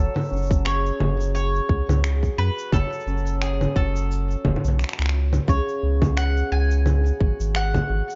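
A lightly swung groove in four drives this delicate, intimate folktronica excerpt, built on a tight electronic kick and a kit of electronic congas, shaker and finger snaps, all tape-softened and carrying the air of a large room. Beneath them sits a deep, round sine sub bass, sustained and up front, with a fast attack. A picked acoustic mandolin carries the melody on its paired strings, while a hammered dulcimer spins shimmering, ringing arpeggios lower down. Both strings are treated with tape echo and sit further back in the mix. The harmony rests on a minor chord with an added ninth before moving to a suspended seventh chord at 5.5 seconds, all wrapped in a dark digital ambience with the top end rolled off for a hushed, close feel.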